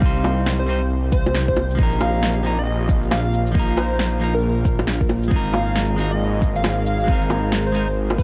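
Ghostly and nocturnal, this short future garage passage moves at 136 BPM in 4/4 with a swung sixteenth-note feel, cut from a longer piece. A glassy, crystalline wavetable pluck carries the melody through chorus and tape echo, while a clean, twangy electric guitar plays accompaniment roughened by vintage 12-bit sampler grit, sidechain pumping and analog delay until 7.9 seconds. Beneath them, an airy, breathy pad holds sustained chords in the background with chorus and pumping, and a menacing, saturated detuned saw bass sits up front, its filter swelling as it pumps with the sidechain. A deep electronic kick anchors the groove from the start, joined at 0.2 seconds by shaker, bongos, cabasa and a woody snare. The harmony moves from Cm to Bbsus4 to Abadd9, all set in a digital ambience.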